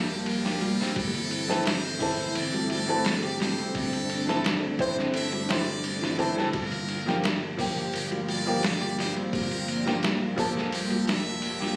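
Trip hop at 86 BPM in G dorian, smoky and hypnotic, with a buzzy, metal-muted trumpet carrying the melody through tape echo over a brilliant, woody upright piano with tremolo, soft felt-muted piano arpeggios with audible action noise, warbling vintage string-machine cellos holding chords in the background, and a round, deep analog bass under tube saturation, while a thumpy, pitched-down sampler-style drum kit sits up front from 0.3 s, all recorded on a phone in the room with club reverb as the harmony moves from Gm7 to Am/G and back.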